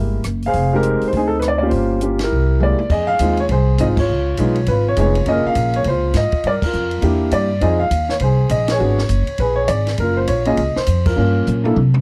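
A brisk swing at 203 BPM in 4/4 drives this smoky, swinging jazz piano trio fragment, cut from a longer piece and captured as a dry, close 1970s-style studio recording. The upright piano carries the melody from Ab3 to F5, its intimate, boxy tone marked by audible action noise and long sustain, and it sits up front until it stops at 11.8 seconds. Plucked upright bass on steel strings, woody and equally up front, anchors the low end from F1 to C3. A compact cocktail drum kit enters at 0.2 seconds with dark cymbals, a high-tuned snare, a punchy kick, rim clicks and toms, sitting lower in the mix, with a fill at 2.6 seconds and another closing the passage. The band hits accents together at points such as 3.9 seconds, over harmony that moves from altered dominants and minor ninths toward Db7, Gbmaj7 and a final Gm7b5.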